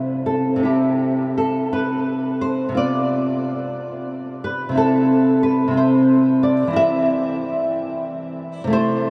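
Wistful and intimate, this romantic fragment for solo classical guitar drifts in a rubato 6/8 over a gently shifting C harmony that passes through a suspended chord before settling on C/E. The fingerpicked nylon-string guitar sits up front with a warm, acoustic tone and audible finger squeak, colored by an analog chorus and a diffuse ambient delay. A huge, lingering reverb soaks the whole 9.1-second passage in a dreamy haze.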